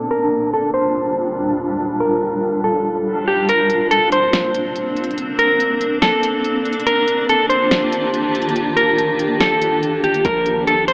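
Atmospheric cloud-rap at 142 BPM in a half-time feel, this dreamy, blissful hip hop fragment in Bb major drifts between Ebmaj9#11 and Bbmaj9 chords. A dark, clean, fingered electric guitar carries the up-front melody through a low-pass filter and digital delay, over a blurred, detuned, evolving granular pad with a slow attack, its own built-in reverb and sidechain pumping, all beneath a filter sweep until 3.5 seconds. A soft electronic R&B kit with a fat snare and smooth hats then enters, its kick held back until 10.2 seconds, when a deep, mellow sine 808 bass arrives, and the whole mix sits in a huge ambient reverb with a hazy AM-radio tint.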